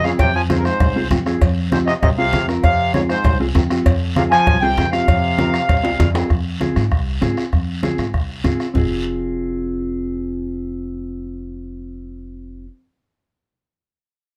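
A reedy, vintage-toned accordion carries the melody up front in this fiery, danceable cumbia, its slow beating giving the line a slightly wavering character. Beneath it a brilliant, punchy trombone plays a second line with light vibrato and a smooth top, while a dark, clean electric guitar, fingered and compressed, sits forward in the accompaniment. A woody, thumpy upright bass played pizzicato anchors the F minor harmony at a brisk 196 BPM in straight 4/4. The percussion bed mixes a soft-beater bombo, a raspy, saturated guiro, bright low-tuned congas set back in the mix, and ringing metal-shell cowbell and timbales, with a drum fill marking the turn into a new section. The accordion and trombone drop out at 6.1 seconds, the cowbell and timbales fall away at 6.2 seconds, and the remaining percussion stops at 8.8 seconds. Guitar and bass then carry on alone under light reverb until this excerpt from a longer piece ends at 12.7 seconds.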